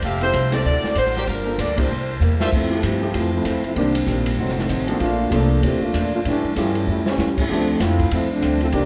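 Heard in the wet reverb of a recital hall, this short cut from a longer big band swing piece in F major moves at a joyful, energetic 193 BPM with a light swing. Tight, bright trumpet stabs and a warm, vibrato-rich saxophone section carry the opening, and the whole band strikes an accent at 1.7 s before a drum fill. From 2.5 s the trombone section takes a solo, its clear, close-miked tone sitting up front with a soft attack and vibrato, over chords moving from Fmaj7 through F7b9 and A7b13 to Dm11. Underneath, a woody, thumpy upright bass on gut strings and an airy, polished drum kit with dark cymbals and a boomy kick keep the time, with another fill near 6.9 s. A baby grand piano sits in the background, while a very quiet, boxy ladder-braced acoustic guitar, picked with the odd finger squeak, fills in the accompaniment.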